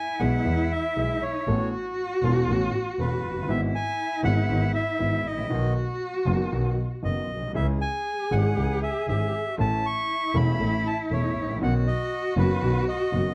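A reedy, up-front bandoneon sings the melody over a bowed cello second line, rich with vibrato and portamento, in this playful, elegant tango excerpt in E major at 119 BPM with a rubato feel. At 0.2 seconds a smooth, vintage-sounding concert grand piano joins with deep-bass accompaniment, alongside a nasal, boxy bowed double bass. The harmony moves from E through C#m to Badd9 in a moderate studio reverb.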